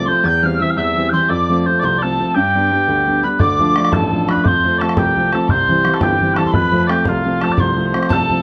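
This short excerpt of a lively, bright Celtic jig in 6/8 opens with mellow small bagpipes carrying a sweet, continuous melody, joined at once by a tin whistle playing a second line above it. The whistle has an airy, metallic tone with a crisp, chiffy attack, vibrato and rolled-off highs, and its playing is a little unsteady. Beneath them an upright piano provides accompaniment with a clear, woody, vintage sound, smooth and up front with long sustain. At 3.4 seconds a damped, tight bodhran enters, adding acoustic percussion with a live-room feel as the tune moves into a new section. The harmony moves through C/E, F and G before turning to D minor, F, C and F, all set in a moderate studio ambience.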